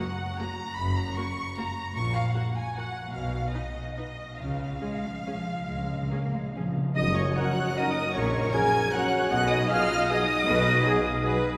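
A festive, sweeping orchestral ballroom waltz in F# major, moving in a rubato 3/4 between 132 and 171 BPM. Rich violins carry the melody with vibrato and portamento over lush background violins, bright violas, a smooth cello section and focused double basses, while round soft-mallet timpani fill from 4.4 to 7.0 seconds. At 7.0 seconds the band accents the return to F# as an airy, distant flute ensemble, a soft oboe and a dark clarinet add second lines, clear French horns hold sustained chords, a quiet tuba deepens the bass and a dark tam-tam sounds softly. From 7.4 seconds punchy trombones join the sustained chords and mellow vintage trumpets add stabs, and the whole orchestra sits in a wet cathedral reverb.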